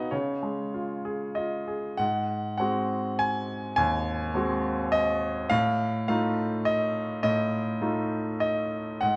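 A bright, brilliant concert grand piano sits up front with deep bass in this sunny, lyrical classical excerpt in 3/4, moving with rubato around 94-106 BPM through Dbadd9, Ab7 and F7/A chords within a moderate recital hall reverb, cut from a longer piece and shifting to a new section at 2.0 seconds.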